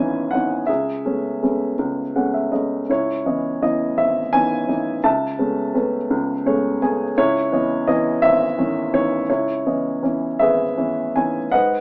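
Through a thin AM-radio filter and light reverb, this melancholic, dark fragment of a longer classical piece features a solo upright piano, woody and intimate with audible action noise and short sustain, placed up front as it plays lyrically in C# minor at a rubato 55 BPM in 6/8, tuned to A4 = 438 Hz, moving between C#m9 and Amaj9/C# chords, with brief fills at 1.8 and 6.1 seconds.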